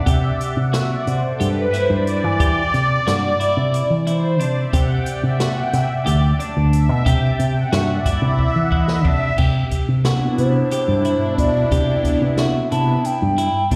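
Heard through a venue's PA with recital-hall reverb, this bright, driving progressive instrumental in 7/8 is cut from a longer piece. A swirling, detuned sawtooth pad with phaser and chorus sits up front and takes the lead until 9.4 seconds, over twangy, compressed twelve-string electric guitar arpeggios, a punchy envelope-filtered bass and an open jazz kit with dark cymbals and a boomy kick, which plays a fill just before the music shifts to a Cmaj9 passage. There, at 10.4 seconds, a hollow, airy clay alto ocarina with vibrato and a crisp attack carries the melody.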